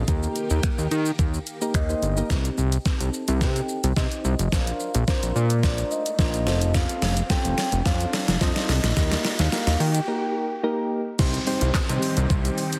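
A straight 4/4 pulse at 108 BPM drives this energetic dance-pop excerpt in C dorian, built on an overdriven, up-front pop drum kit with knocking kick, deep snare, hi-hat, shaker, finger snaps, handclaps and crash, over a fat, detuned sawtooth analog bass that pumps with sidechain, while mellow, round electric-piano-like synth keys move through Eb, Cm, Bbadd9 and F, a dark, vibrato-tinged octave-layered synth lead carries the melody with dub echo from 1.7 s, a swirling, phased vintage string machine sits in the background and returns at 11.6 s, and background risers and downlifters feed a build-up with a filter sweep, a short break and a drop at 11.2 s, the whole mix carrying a heavily compressed radio sound with light reverb.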